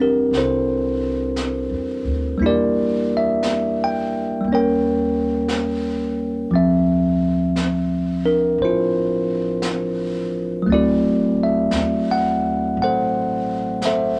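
Intimate and tender, this slow jazz ballad moves at 58 BPM in a swung 4/4. A bright, bell-like tine electric piano sits up front, voicing a rootless Fmaj9 through Em7b5, Eb7 and Dm9 before settling on D7, while a woody, growly pizzicato upright bass plays underneath. A brushed drum kit with a high-tuned snare and hi-hat enters at 0.3 s, its natural small-room sound set in moderate studio reverb.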